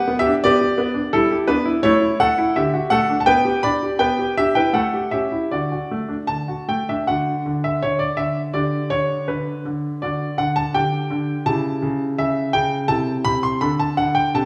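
Classical-period piano sonatina in D major at 83 BPM in 2/4, cut from a longer piece, where a clear, natural-toned baby grand with short sustain plays solo, up front and with rubato, spanning C3 to C6 through an elegant, cheerful passage that turns to a new section at 7.1 seconds, all set in a wet recital hall reverb.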